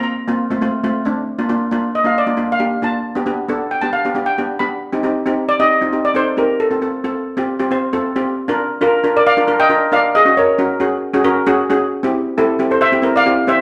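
A wet, large studio reverb surrounds this live take of two steel pans played together in one room, both struck with hard rubber sticks and sitting up front. It is a carefree, festive calypso in Bb major at 135 BPM in a straight 4/4, tuned to A4 = 441 Hz, and it is cut from a longer piece. The lead pan carries the melody between E4 and B5 with a bright, shimmering ring. A double seconds pan plays the accompaniment from A3 to C5, sitting a little lower in level, with a metallic, airy tone. Both pans play from start to finish over chords that move from F and Bb through G and Cm in the opening section. At 8.4 seconds a second section begins, turning from Bb to Gbsus2 and then C.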